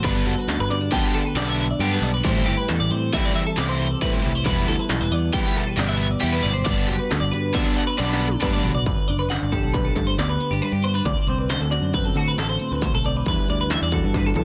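In a straight 5/4 at 136 BPM, this bright, intricate math rock and midwest emo excerpt in G major sets a twangy, compressed twelve-string electric guitar up front, spinning arpeggios through chorus, tape echo and plate reverb, over a dark, fingered clean guitar, a growly picked bass and a produced industrial kit with a distorted kick, clanging snare and crisp hats, while a double-tracked overdriven guitar riff stops at 8.7 seconds as a drum fill carries the dense, heavily limited mix into a new section where the chords move to D7 and Em7.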